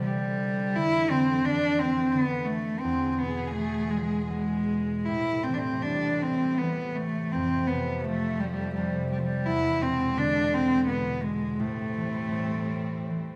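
A close, intimate solo cello carries the melody up front in this haunting Celtic slow air, its soft attack, airy sul tasto bowing and light vibrato giving the line a breathy, longing quality. A fingerpicked concert harp rings beneath it, while a lush, distant string section holds sustained chords that move from Cadd9 through E and F to a closing Am7 in A minor. The short excerpt unfolds in a free, rubato 3/4 at roughly 74-88 BPM, set in a moderate recital hall reverb.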